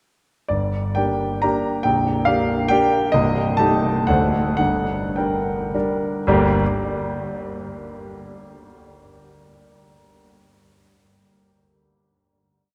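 The recording sits in a vast, echoing cathedral, where a long, wet reverb lingers around every note. A solo concert grand piano, deep in the bass, smooth and vintage in tone, sounds close and up front within that space. This brief, whole piece is a romantic classical dance in triple time with dotted rhythms, played with a free, rubato feel that makes it wistful and capricious. A single-line melody rides over bass and chords that stress the second or third beat of the bar, moving from G minor through Gm/Bb and Am7b5/C to a D7 before settling back on G minor. The piano plays from 0.5 to 6.6 seconds, and a final chord arrives at 6.3 seconds and rings into the cathedral's echo.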